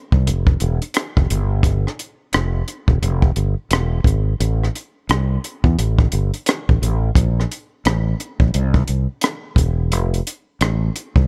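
A fretless electric bass sits up front, its direct, warm tone moving through a low register from E1 to E2 across the whole clip. Alongside it, a compact cocktail drum kit with a dark, smooth character and a rolled-off top plays hi-hat, rim click and a punchy kick, sitting up front in a small room. This is relaxed neo-soul with an R&B feel, its sixteenth notes carrying a gentle swing. Both parts play together from start to finish, and the dry sound leaves them intimate and close to the ear. Cut from a longer piece, the excerpt stays in a single section, giving it an easy, unhurried mood.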